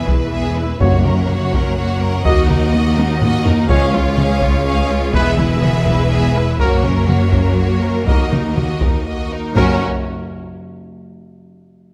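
A majestic, adventurous cinematic film-score cue in 3/4 at 124 BPM and F# major opens with lush, vibrato-rich strings: a violin section carries the melody over a second violin line, expressive viola accompaniment with portamento, close sustained string chords, a focused cello bass and a smooth, bowed double bass section, all under light reverb. Hard-stick taiko drums, compressed and saturated, drive the music from 0.1 s and add a fill at 3.0 s. From 0.8 s a distant, very quiet French horn section holds mellow chords, a dark solo trumpet punches out stabs, and round soft-mallet timpani sound at intervals in the background as the harmony moves through E, F#, D#m and C#.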